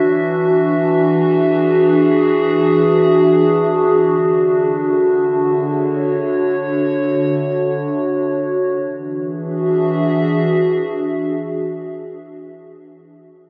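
In free time, this brief ambient excerpt drifts in E mixolydian with a spacious, peaceful mood. It is cut from a longer piece. A single warbly, tape-like pad carries everything from 0.0 to 12.0 seconds, holding sustained chords between D3 and E5 with a slow attack and long release. Its detuned blend of square, triangle and sawtooth tones gives it a nostalgic, lo-fi character, mellow and up front, colored by chorus, phaser and its own built-in reverb. The harmony moves from E7 to Dmaj7 at 4.0 seconds, then returns to E7 at 8.8 seconds as a second section begins. A huge, wet ambient reverb with a long 6.2-second decay surrounds the sound, lending it a vast, floating sense of space.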